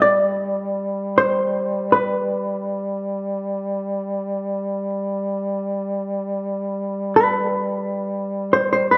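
Mournful and solemn, this short cut from a longer piece is a Caucasian folk lament that unfolds in free time, tuned to A4 = 444 Hz. A mellow duduk sustains a single low drone on G3 throughout the full 9.0 seconds, its tone carrying gentle vibrato and scooped notes in a distant, roomy folk style. Above it, a clean electric hollow-body jazz guitar carries the melody within a narrow span from B4 to D5. The guitar's fingered sound is dark and compressed, and it sits up front, clearly louder than the duduk. A moderate scoring-stage reverb with a 1.6-second decay lends the pairing a spacious, solemn air.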